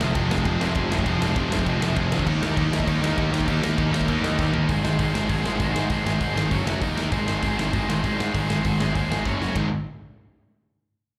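A rowdy, energetic punk rock excerpt at 198 BPM in Ab major opens with a growly, fuzz-drenched picked bass and a punchy big-room drum kit up front, while biting slapback-echoed and tight distorted guitars churn riffs behind them, a very quiet double-tracked sludgy guitar drops out at 4.7 seconds as the chords move from Fm and Eb to Ab, and drum fills at 4.4 and 9.2 seconds push the band through the club reverb of a live gig heard over the venue's PA.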